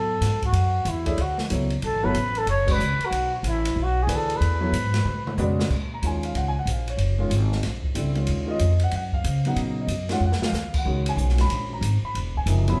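A breathy, dark trumpet carries the melody over grand piano and woody, thumpy pizzicato upright bass in this intense, cool modal jazz excerpt, swinging at 186 BPM in B dorian before moving to Eb minor at 5.7 s. With vibrato, scooped notes and a whispered, intimate tone, the trumpet stops at 5.4 s, leaving the piano's natural-sounding accompaniment, the up-front bass, and an airy acoustic drum kit with dark cymbals and a boomy kick that adds short fills. Playing live together in one room under a large, wet studio reverb, the band hits a shared accent at 2.6 s.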